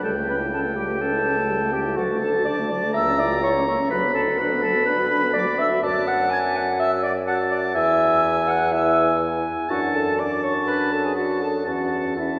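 Spirited and lively, this quick classical-period movement for wind quintet moves at 124 BPM in a straight 4/4, heard as a 12.4-second excerpt cut from a longer piece. All five players sound together throughout, with the silver concert flute carrying the melody high in its range, its airy, metallic tone crisp in attack yet distant. The clear oboe sits up front with a soft attack as the second line, while the mellow clarinet and the French horn, touched by light vibrato, fill out the accompaniment. Beneath them the bassoon anchors the bass with its own gentle vibrato. The harmony travels from A7/C# through D, F#7/C# and Bm/D toward E, settling on A/E near 11.7 seconds, and the whole ensemble blooms in a wet cathedral reverb that gives it the spacious ring of a church or concert hall.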